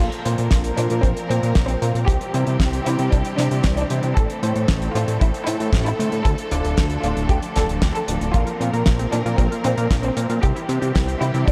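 A bowed violin section carries a smooth melody with vibrato over lush, distant sustained string chords, fat detuned analog bass and piano stabs with tape echo, as a tight up-front kick, damped 70s hi-hat and snare drive this danceable, bittersweet italo disco excerpt at 115 BPM through Bbsus2, C, Am and Dm, the piano dropping out at 8.2 seconds as a round, chorused analog pluck arpeggio enters at 8.3 seconds in a dreamy mix soaked in huge reverb.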